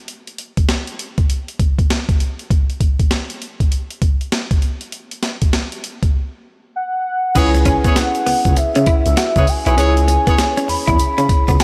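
Punchy and bouncy, this new jack swing R&B cut opens at 0.1 seconds with a gritty, compressed sampler-style drum kit of thumpy kick, medium-tuned snare, hi-hat, crash and tambourine, up front with a swung sixteenth-note feel. After a brief silence, a velvety, detuned sawtooth synth lead with vibrato, chorus and slapback echo takes the melody at 6.8 seconds. A tine electric piano and jazz-style horn stabs with vibrato and delay join at 7.3 seconds. At 7.4 seconds, over a C#m7 chord, a smooth gliding synth bass and a grainy, very quiet tube shaker arrive. A direct-recorded clean picked guitar riff with lush chorus follows at 7.5 seconds, and together they fill out the groove under light reverb.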